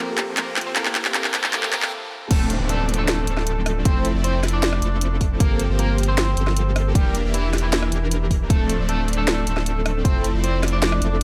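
Riding a half-time 4/4 pulse at 155 BPM in D minor, this lush, dreamy future bass excerpt builds for 2.3 seconds with a trap-kit fill, a filtered soft supersaw riff, a thick saturated triangle sub bass, a twangy, slightly broken-up electric guitar melody carrying harmonic tremolo and digital delay, a faint clean tine electric piano, quiet risers and a brief stop. It then drops into a punchy layered electronic kick, sharp overdriven snare and bright hats, with guitar, supersaw and sub all pumping to the sidechain over chords moving from Dm7 to Fmaj7 and Gm11 in a high-passed digital ambience.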